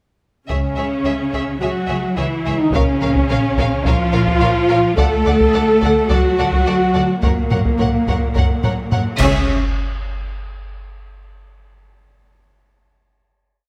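A saturated, compressed taiko ensemble drives this relentless, dramatic cinematic orchestral cue at 107 BPM in 4/4, its hard sticks pounding a big drum ostinato from 0.5 seconds. Over it, a lush violin section plays the melody with vibrato and repeated notes from a distant vantage, joined by a second violin line with soft attacks and an expressive, smooth top. Close, warm violas slide with portamento as they double the tune in unison, while focused cellos double it at the octave. Beneath them a bowed double bass section holds even, repeated bass notes, and a mellow French horn section sustains chords in the roomy background through a progression of C#m, A#m, D and F#. At 7.2 seconds dark, dry cymbal swells, clash cymbal crashes and concert bass drum strokes arrive up front, building to a band accent and final hit at 9.5 seconds that rings out in a moderate scoring-stage reverb.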